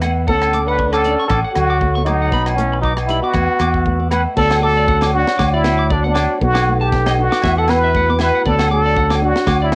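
A sunny highlife groove at 118 BPM in D major opens on a round, punchy fingered bass, a tight funk kit with a high-tuned snare and a cassette-tape tint, distant ringing agogo bells, a slightly broken-up twangy electric guitar picking arpeggios through analog delay, a small fingerpicked nylon-string guitar, and a flute-like tonewheel organ holding chords through a slow rotary speaker. From 0.3 seconds a plunger-muted trumpet takes the melody up front with a wah-wah, vibrato-laden jazz voice, shadowed until 4.1 seconds by a breathy, subtoned alto saxophone set back in the room. The swung sixteenths and a cycle of Dmaj7, B7 and Esus2 give this home cassette recording a warm glow under light studio reverb.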